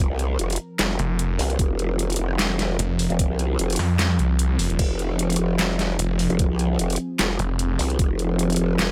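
A swung, half-time 150 BPM groove in 4/4 drives this menacing, aggressive heavy wobble dubstep excerpt in F minor, with an overdriven drum kit of deep snare, handclaps, hi-hat and crash entering at 0.2 s and a knocking, tape-warm electronic kick joining at 1.6 s. A growling, wobbling growl bass with formant filtering and chorus sits up front from the start, while a snarling, detuned sawtooth bass with a moving notch and distortion arrives at 1.0 s to thicken the low end. Beneath it all, a lush, warbling vintage pad holds sustained F minor chords with slow attack, chorus and sidechain pumping, the whole mix carrying a light reverb.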